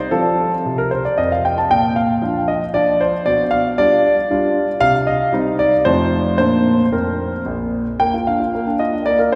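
A straight 3/4 pulse at 114 BPM carries this elegant, playful fragment of a classical-period piano sonatina in Bb major, played solo on an intimate, up-front concert grand whose deep bass reaches down to Bb1, whose audible action noise sits close to the ear, and which rings out in a wet church reverb with a 3.5-second decay before a new section begins at 8.0 seconds.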